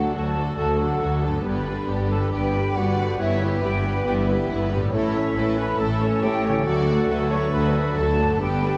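A straight 4/4 pulse at 138 BPM drives this soaring, adventurous stretch of heroic adventure film score, cut from a longer piece and running 8.8 seconds over a D, G, Em/G, A and back to D progression. The melody sits with a warm, background violin section, while an airy, bright large flute ensemble floats a second line above it, joined by a rich, lush second violin section and a clarinet in classical style. A very quiet viola section supplies expressive accompaniment with vibrato and portamento. A distant, roomy French horn section holds sustained chords, a mellow trumpet section adds background stabs, and a very quiet concert harp rings with fingerpicked arpeggios. Underneath, a clear, distant double bass section and a smooth, even cello section carry the bass, all bowed with vibrato. A moderate scoring stage reverb wraps the orchestra.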